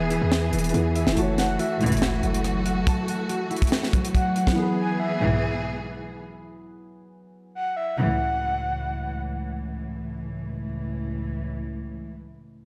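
Hip hop trap fragment with an eerie, half-time feel, where a mellow baby grand piano, lush bowed symphonic strings and a ringing concert harp with delay open together; a punchy, heavy 808-style bass sits up front until 2.8 s, and a dry funk drum kit with a tight kick sits up front until 4.6 s; a breathy flute-like synth lead with chorus and delay drifts in at 1.4 s; and a dark, intimate studio string section plays sul tasto stabs that carry on alone to 12.1 s, all within a dreamy, reverb-soaked mix.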